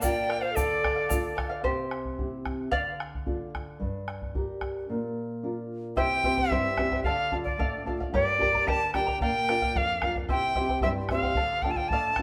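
The reedy, cane-bodied quena sits up front, carrying the melody with vibrato and tongued notes in this earthy, festive Andean folk ensemble piece, cut from a longer performance, moving at 111 BPM in a straight 2/4. In the opening bars a breathy bamboo pan flute with a crisp, chiffy attack adds a second line beneath it, while a grainy tube shaker adds a brief sparkle before both fall away. From 1.6 s the fingerpicked charango takes a solo passage, its double strings, some doubled at the octave, giving a shimmering sound. The quena returns at 6.0 s for the closing section, and the charango joins it again. Under it all a dark, thumb-plucked nylon-string guitar and a round, close and dry bombo hold steady through chords of Bb, Dm, C and Gm. The band plays live together in a wet stone room whose reverb lends the ensemble an open, resonant feel.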